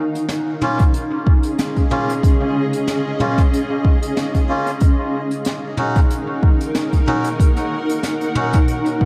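Ambient dub at 93 BPM in Eb minor, meditative and spacious, cut from a longer piece: a cloudy, detuned granular pad holds sustained chords moving from Db6 to Ebm7 at 4.8 seconds, a deep, tape-tinged electronic kick sits up front from 0.8 seconds, a brushed jazz kit of hi-hat, snare and toms adds dub echo, and reedy, breathy melodica stabs with their own dub echo float through a dreamy mix soaked in huge ambient reverb.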